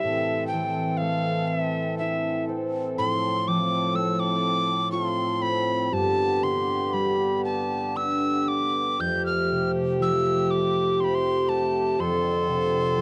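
In a rubato 3/4 at 60 BPM, this pastoral, tender Celtic slow air, tuned to A4 = 437 Hz, moves gently through Am, F/A, G, Fadd9 and Dm7/F in a brief fragment cut from a longer piece. A close-miked metal tin whistle carries the melody up front, airy and crisp with audible chiff and vibrato, over ringing fingerpicked concert harp and the reedy, breathing sustained chords of a mellow pedal harmonium. At 9.0 s a single bowed viola enters with a soft-attacked, pure sul tasto second line that floats above the dry, intimate small-room sound of a 1970s-style studio.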